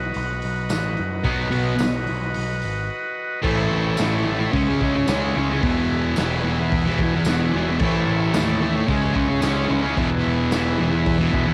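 A thick, double-tracked fuzz guitar sits up front from 1.2 s, driving a distorted riff over a growling, overdriven picked bass and a punchy, dark garage drum kit with a medium-tuned snare, crash, hi-hat and a rolled-off top. Behind them a vintage, buzzy combo organ holds overdriven sustained chords, adding a short fill at 6.7 s, while a jingly tambourine rattles along in a small room. It is a rowdy, raw garage rock cut from a longer piece, with the harmony settling into its main progression at 3.4 s, all caught on a home cassette recording with light reverb.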